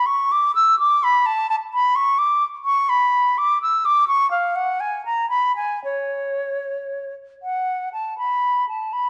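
A dark, warm recording in a moderately reverberant recital hall carries a solo silver concert flute through a solemn, introspective baroque-style classical fantasia in B minor, tuned to A4 = 439 Hz, its airy, metallic tone shaded with vibrato and tongued notes spanning C#5 to E6 in a rubato 6/8 at 72-88 BPM (dotted quarters), moving into a new section at 7.4 s before this fragment of a longer piece breaks off at 9.1 s.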